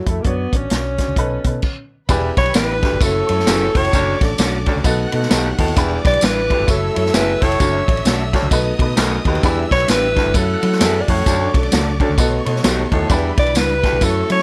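Uptempo 1960s-style soul with an uplifting, danceable swing, led by a breathy, mellow alto saxophone carrying the melody up front with slapback echo over woody upright piano, a round, foam-muted electric bass and a punchy vintage drum kit with dark cymbals. After a brief stop at 1.6 seconds, the band opens up at 2.1 seconds as a raspy, gritty baritone saxophone riff, jingly tambourine, a lush distant string section and a very quiet tonewheel organ with key click and slow rotary speaker join in. Twangy, slightly broken-up electric guitar stabs sit in the background from 2.5 seconds, all within a light reverb.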